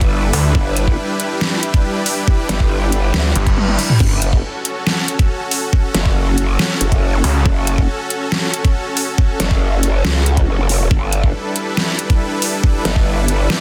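A dense, heavily limited, dry mix opens this menacing, aggressive excerpt of heavy half-time wobble dubstep, where a knocking electronic kick and a layered drum kit with a deep snare, metallic hats, crash and toms sit up front with a small-room tint. A growling, wobbling growl bass, formant-filtered and overdriven with chorus, carries the low end throughout. Short stabs of a snarling, detuned sawtooth bass cut in briefly. A lush supersaw pad with a sub octave pumps from sidechaining beneath them, moving from G6 to F#m at 4.0 seconds. Background reverse cymbal and zap effects mark the drum fill at 3.6 seconds.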